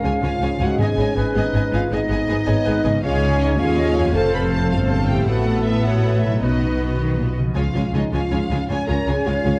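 A full orchestra opens this heroic, soaring cinematic excerpt in a straight 12/8 at 106 BPM in Db mixolydian. Expressive, vibrato-laden violins carry the melody over a smooth second violin line and an airy, hollow flute, while intense violas accompany, mellow horns and dark, distant trombones hold sustained chords, and a ringing harp plays quiet arpeggios. Rich double basses sit up front with cellos alongside them, a very quiet, dry timpani stroke sounds from 0.8 to 1.3 seconds, and the harmony moves through Abm, F, Asus2 and Cb before settling on Db at 7.6 seconds, set in a dark, warm recital-hall reverb.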